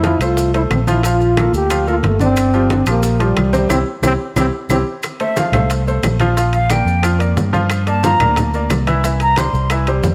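A breathy, whispered trombone carries the melody from the start over bright baby grand piano with audible action noise, a round, up-front fingered electric bass, congas, very quiet tight bongos, ringing timbales, grainy maracas and woody claves, in a festive, danceable salsa excerpt at 180 BPM in F major where a band accent at 3.7 seconds and a drum fill at 4.0 seconds arrive before a pure, crisp-attacked concert flute with slapback echo takes a solo from 5.2 seconds, all in light reverb.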